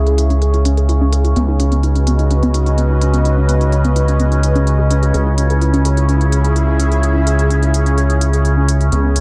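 Melancholic and dramatic, this melodic techno excerpt moves at 127 BPM in C# minor, with a gritty, saturated sawtooth synth bass pushed up front on a low C# beneath an overtone-sweeping, detuned drone whose overtones shift inside its chorus and built-in reverb. An airy, breathy pad with a faintly nasal edge hovers above, while a warbling, lo-fi pluck plays arpeggios in the background through chorus and dub echo, and smooth, layered electronic hi-hats run under a low-pass filter. The harmony moves from C#m to Badd9/C# at 1.4 seconds and returns to C#m at 5.1 seconds, all set in an echo-heavy mix with light reverb.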